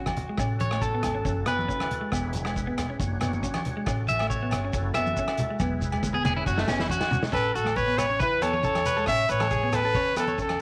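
This sunny, danceable highlife guitar band excerpt opens at 138 BPM in A major with two electric guitars: a twangy, slightly broken-up lead playing fingered arpeggios up front with slapback echo, and a clean, picked semi-hollow guitar playing accompaniment through spring reverb. A guitar solo carries the first 7.3 seconds over a cycling A6, F#m7, E and Dmaj7/F# progression. Underneath, a dark, smooth vintage drum kit with a punchy kick and rolled-off top joins ringing, saturated agogo bells, soft-handed congas in the background, a grainy, close shekere, and a woody pizzicato upright bass. A lightly overdriven tonewheel organ holds full chords through a slow rotary speaker with chorus vibrato. A drum fill at 5.6 seconds leads into a new section, where a bright, close-miked trumpet steps forward with a jazz-style solo and light vibrato, landing on an A chord in a lightly reverberant studio space.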